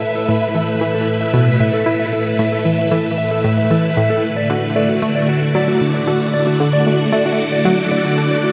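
A swirling, vintage string machine holds up-front sustained chords from Asus2 to Dadd9 through ensemble chorus and phaser, while a round, detuned analog pluck riff with chorus and delay enters at 0.3 s over dark, clean fingered electric guitar arpeggios with analog delay, and a filter sweep on the synth arpeggio runs across this expansive, cosmic 114 BPM stretch of sequencer-driven ambient space music, cut from a longer piece and soaked in an 8.5 s reverb.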